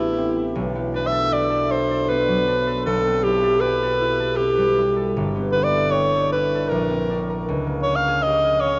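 Dreamy and luminous, this short cut from a longer impressionist classical duo drifts in a rubato 3/4 at 78 BPM, tuned to A4 = 445 Hz, with a clear, up-front alto saxophone singing the melody in classical style with light vibrato over a mellow, ringing, fingerpicked concert harp, both playing throughout as harmonies glide from Am9 through Bm7, G69 and Bb69 to a closing C#5, all bathed in the long, echoing wash of a vast cathedral space with a softened top end.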